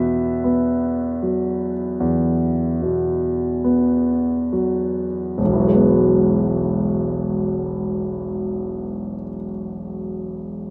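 Rubato 4/4 at a slow 33-39 BPM, easing down over the first 5.4 seconds, carries this serene, luminous impressionist classical excerpt for solo grand piano, polished and up front with long sustain across E1 to E5, as the E major harmony moves from Esus2 to Eadd9 at 5.4 seconds within light reverb.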